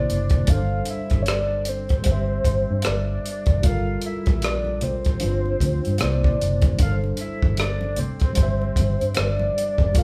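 A sultry, introspective slice of neo-soul R&B, this brief excerpt moves at an unhurried pace with a lightly swung sixteenth-note feel. A soft octave-layered synth lead carries the melody in a narrow upper register, its round, triangle-like tone with a sub octave beneath, sustained notes, vibrato, and a shimmer of chorus and phaser. A mellow tine electric piano supplies clean, direct chords through a lush progression that opens on G13sus4 and moves through Cadd9, Gm9, Dm7/G and C7 before returning. Underneath, a vintage muted fingered electric bass sits dark and round with a punchy, amped character. A compact cocktail drum kit sits up front with hi-hat, rim click and a punchy kick under a rolled-off top, while very quiet, bright congas join at 3.6 seconds. The band sounds as if it is playing live together in one room, softened by a moderate large studio reverb.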